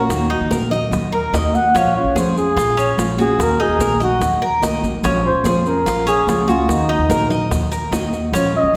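A straight 4/4 groove at 146 BPM drives this short, danceable cut of Cuban son and guajira, its harmony rocking between Ebm and Bbm7. Up front, a trumpet in a bucket mute carries the melody as a jazz-style solo through the first 5.0 seconds, its tone dark and veiled with light vibrato and scooped notes, heard at a roomy distance. Beneath it, a fingerpicked nylon-string guitar gives full-bodied, deep classical accompaniment, while the Cuban tres spins picked arpeggios on double strings with a metallic edge and some octave-doubled strings. The pizzicato upright bass sits low with a woody, thumpy tone from steel strings. In the background, bright, high-tuned congas ring in a large room and tight bongos sound close and dry. Grainy, mellow maracas, also close and dry, join them, and all three enter at 0.1 seconds. A wet reverb lends the whole ensemble the glow of a church or concert hall, giving the passage a warm mood.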